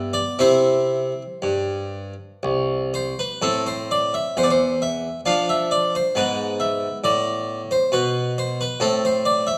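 A solo harpsichord opens in C major, its plucked, mid-forward tone sitting up front, with the full sound of a Flemish-style instrument playing two sets of strings. This classical, baroque-style suite movement moves in a flowing, dance-like 3/4 at a rubato 57-70 BPM, turning to A minor at 3.4 s and passing through D minor and a G-sharp diminished chord before settling back on A minor at 8.8 s. A moderate recital-hall reverb surrounds the playing in this short cut from a longer piece.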